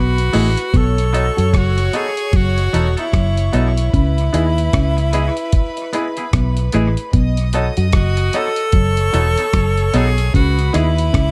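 A bright, close-miked tenor saxophone carries the melody with a pop-style vibrato, trailed by tape echo, in this sweet, tender lovers rock reggae passage cut from a longer piece. Beneath it, a round, punchy fingered electric bass with a foam-muted tone sits up front, while a gritty sampler-style drum kit with a thumpy kick, hi-hat and rim click enters at 0.2 seconds with a swung sixteenth-note feel. A mellow, clean electric guitar plays a riff, and from 0.3 seconds a dark baby grand piano adds intimate accompaniment, its action noise audible, alongside a twangy guitar placing compressed stabs in the background. High above, a clear studio string section floats a soft-attacked second line. The harmony moves between a rootless C#m7 and B7, and the dark production is wrapped in light reverb and small-room ambience.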